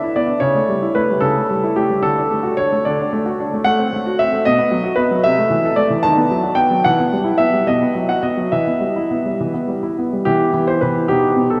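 A clear, natural-sounding concert grand piano plays alone and sits up front, its deep bass and long sustain ringing into a vast, echoing cathedral reverb that gives the short passage a generous sense of space. The music is a classical-period sonatina in 6/8, moving at 74 dotted-quarter beats per minute with a rubato feel that suits its elegant, playful mood. It begins in D major, with an A7 over C# resolving to D by 2.0 s, then turns to E minor from 3.7 s through a diminished chord and harmonies that circle between B7 and E minor. The piano ranges from B2 up to A5, and a brief new section opens at 10.3 s before the passage settles on a B chord at 11.1 s. Cut from a longer piece, the recording ends at 11.6 s.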